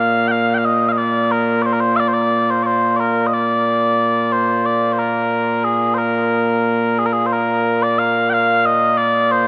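Scottish traditional pipe music in a straight 4/4, carrying a proud, ceremonial mood. A lone set of small bagpipes plays a sweet, mellow, continuous line up front, spanning Bb2 to G5, before the tune moves into a new section at 7.3 seconds. A huge ambient reverb with a long tail surrounds the pipes, and the recording is cut from a longer piece.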